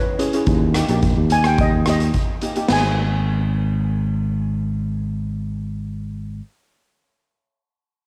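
A lightly reverberant home cassette recording carries this moody, cool calypso excerpt, where a dark, shimmering lead steel pan with tape echo plays the melody over a boxy double-seconds pan accompaniment, an up-front fingered electric bass, and an airy street-band drum kit with a boomy kick and dark cymbals that drops out at 2.8 seconds, just after the harmony moves from D# to G#m at 2.7 seconds.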